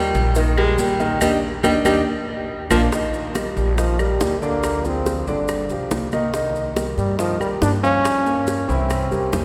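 A straight 4/4 Afro-Cuban jazz groove, sunny and lively, rides on ringing high-tuned congas, tight cowbell and bongos, woody claves and grainy maracas beneath a thumpy pizzicato upright bass and a warm, natural grand piano, while a smooth-topped baritone saxophone with light vibrato solos until 2.8 seconds through a band accent, before an up-front trombone with scooped notes takes the melody from 3.6 seconds, the whole cut from a longer piece and set in the long cathedral reverb of a church or concert hall.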